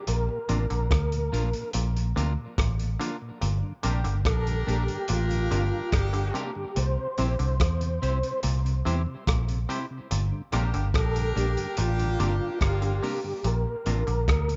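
A mellow tonewheel organ melody with chorus vibrato, slow rotary speaker and dub echo opens this serious, hypnotic roots reggae excerpt at 72 BPM in G dorian, joined at once by a dark, foam-muted bass up front, a gritty, saturated breakbeat kit of hi-hat, tight kick and rim click, a nasal muted clav arpeggio, a second organ comping in the background, and a bright hollow-body guitar, while a clear, distant horn section adds a second line from 3.8 s over a Bb, Gm and C progression in a small, lightly reverberant room.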